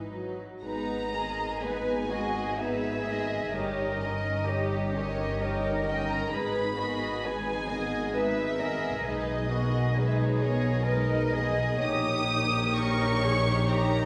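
In a rubato 3/4 at 55-67 BPM, this elegiac, melancholic excerpt from a slow romantic movement for string orchestra sits in G# minor, with violas, cellos, double basses and a second violin line sounding from the start and a melody violin section entering at 0.6 seconds. The violins carry a soft-attack, sul tasto intimacy with light vibrato, the violas add a dark, woody lushness, the cellos sound close and smooth, and the basses stand up front at the bottom. A recital-hall reverb of 1.7 seconds wraps the ensemble in a church-like space, with harmonies moving from G#m through D#7/G and G#m/B to D#7/A#.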